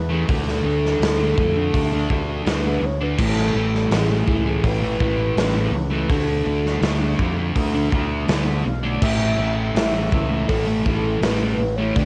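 A mellow, horn-like synth lead with a soft, round sawtooth tone, vibrato, chorus, cassette tape and analog delay carries the melody over a growling, overdriven fingered electric bass from the start, joined at 0.1 s by a distorted, double-tracked fuzz guitar riff and at 0.3 s by a raw garage drum kit, saturated and gritty with a punchy kick and a rolled-off top, in this hazy, wistful 82 BPM shoegaze and dream pop excerpt in A major that moves from D5 through Amaj7 back to D5 and on to A5 under light reverb on a home cassette recording.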